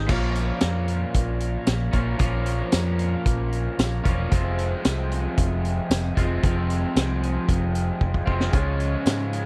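Bittersweet and cool, this indie rock excerpt moves at 114 BPM in a straight 4/4 over Bbm, Fm and Db chords, with a twangy, compressed clean guitar riff with lush chorus and a bright, overdriven garage guitar riff with slapback echo. Underneath, an up-front fingered electric bass and a saturated, gritty vintage drum kit with dark cymbals, a high-tuned snare, a tight kick and tambourine drive the groove, while a fat tonewheel organ holds very quiet sustained chords through a rotary speaker. The dry, close 1970s-style studio sound frames a drum fill at 8.0 seconds and a hollow, distant group handclap at 9.1 seconds.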